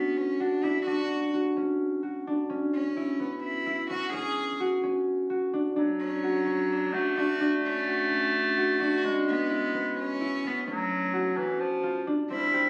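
Contemporary chamber music in a restless, pensive 7/8 at 257 BPM counted in eighths, taken from a longer piece, with a rich, floating bowed cello carrying the melody sul tasto over mellow, ringing thumb-plucked arpeggios from a concert harp, both up front from the start. At 5.8 seconds a bright, vintage-toned clarinet enters with a soft-attacked second line in its low register, as the harmony moves from Bmadd9 through Dmaj7 and E6 to a closing Dmmaj7/F. The sound carries light studio reverb and the character of a phone recording made in the room.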